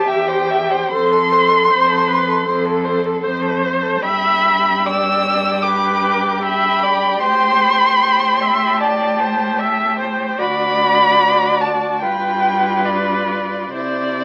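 Heard through the crackle of a very old 78 rpm record and a wet studio reverb, this short passage cut from a longer piece is a serene, slow romantic movement for string quartet in 4/4, played with rubato. The first violin sings the melody up front with vibrato, a soft attack and expressive portamento. The second violin adds a dark, smooth and even second line, the viola supplies a warm, up-front and expressive accompaniment with its own portamento, and the clear, focused cello enters at 0.1 seconds on the bass as the harmony moves from C over E through F, G, A minor seventh and D to G7, settling on C at 13.7 seconds.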